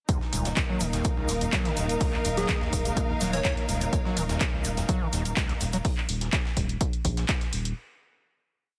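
A punchy, tape-warm electronic kick drives this raw, hypnotic acid house piece in Eb minor at 125 BPM, joined by an analog drum machine's claps and hats, a very quiet, gritty breakbeat kit, a grainy tube shaker, a deep saturated sub bass, a squelchy distorted acid bass line with dub echo, a dark detuned pad and clear bowed strings that both pump with the sidechain, and a bright phased unison lead heard from 2.4 to 3.5 seconds, in a heavily compressed, radio-like mix with light reverb.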